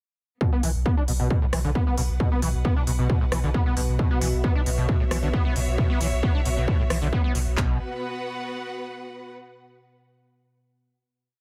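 A dry, close recording of relentless, driving peak-time techno, built on an up-front, tape-warm four-on-the-floor kick and clap, with smooth programmed hats and rim clicks set further back. A squelchy, screaming acid line with distortion, lush chorus and delay carries a filter sweep through the groove, over a thick, overdriven sub bass rumbling between the kicks and a dark, detuned ambient pad drone that enters at 2.4 seconds, all three pumping with the sidechain. A clear, bowed string section fades in from 0.4 seconds with slowly shifting chords and carries the final chord, ringing on alone until 9.3 seconds.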